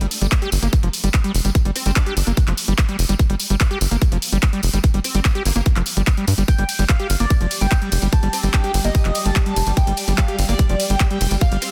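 Dense and heavily limited with a digital ambience, this short cut of psychedelic trance feels hypnotic and intense from the first beat. A tight, punchy sequencer bass with tube saturation sits up front beside a layered electronic kick recorded in a small room, while an overdriven drum kit adds handclaps, bright hi-hat and ride cymbal, and a jingly acoustic tambourine rattles in the background. Over this, a squelchy, resonant acid riff screams through distortion, chorus, sidechain pumping and digital delay. A metallic FM wobble bass surfaces in brief bursts, first at 1.8 seconds, carrying distortion, ensemble chorus and a high-pass filter. At 6.5 seconds a gritty, guitar-like lead with vibrato, phaser and dub echo takes the melody. From 7.2 seconds a swarming, detuned drone of nasal, granular sustained chords creeps in the background, with sidechain pumping.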